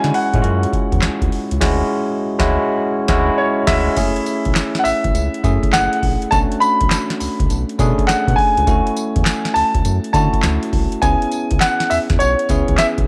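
A bouncy, punchy new jack swing excerpt opens with a clear baby grand piano melody touched by tape echo over a bell-like tine electric piano, a round, deep analog bass with a ring-modulated edge, and a booming drum machine with crisp snare and metallic hats, accenting together from 1.6 to 4.0 seconds while the drums drop out from 2.8 seconds before the full groove returns at 4.0 seconds, all bathed in spring reverb and captured as a home recording on cassette.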